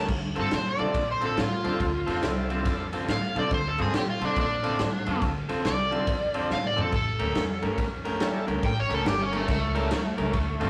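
Smoky and soulful, this electric blues shuffle moves with a light swing, caught mid-flow from a longer piece. An overdriven slide guitar sits up front and plays a bright, gritty solo throughout, while a twangy electric guitar, just at the edge of break-up, works a fingered riff beneath it. A woody pizzicato upright bass on steel strings anchors the low end, and a raw garage drum kit, dark and gritty with a punchy kick and a medium-tuned snare, drives the groove and plays a short fill at 6.5 seconds. A full, shouting tonewheel organ, lightly overdriven through a slow rotary speaker, joins in the background at 0.8 seconds. The harmony rests on Dm7 before turning to a tense A7b9 at 6.9 seconds, and the whole take carries the rough, tube-saturated feel of a rehearsal-room recording in a wet, small space.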